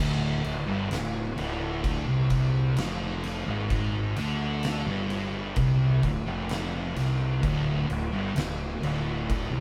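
A straight 4/4 pulse drives this ominous, hypnotic stretch of stoner and doom metal, cut from a longer piece and held on a single D minor chord throughout. Two distorted fuzz guitars sit in the background playing a low riff, one of them warm and the other dark, while a growly, overdriven fingered electric bass with tube saturation sits up front. An oversized, low-tuned acoustic drum kit enters at 0.4 s with a punchy kick, fat snare and dark crash cymbals in a bright, pumping stone room, and the whole band plays live together in moderate studio reverb over a faint mains hum.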